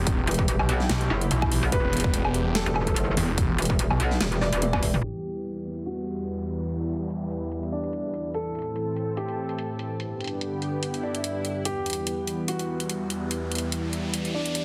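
A lush, warbling unison pad and a snarling, growling saw bass open this chaotic, aggressive stretch of heavy wobble dubstep at 145 BPM in E minor with a swung half-time feel, soon joined by a punchy electronic kick, a dubstep kit of metallic hats, huge snare, toms and woodblock, and a bright, metallic FM wobble bass for a drop that ends at 5.0 s, after which a dark, mellow baby grand piano with tape echo carries on over the pumping pad through a filter sweep, with chords moving from Em to Am and G, and into a closing build-up from 11.7 s, while electronic downlifter, swell and riser effects sound from 5.3 to 8.3 s and again from 10.9 s onward, all beneath a heavily compressed, radio-like sound.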